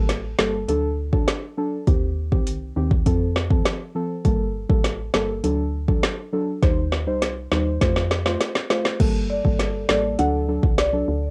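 Dancehall at 101 BPM in G minor, bouncy and hypnotic, this short excerpt from a longer piece sets deep, mellow chord stabs with chorus and sidechain pumping over a round, dark FM bass and an overdriven, up-front afro-pop drum kit with a deep kick, woody snare and metallic hats that plays a fill from 6.6 seconds, before a boxy-sounding marimba with analog delay enters at 9.3 seconds, all carrying the dry, lo-fi tint of a home cassette recording as the chords cycle through Gmadd9, D, Cm and F.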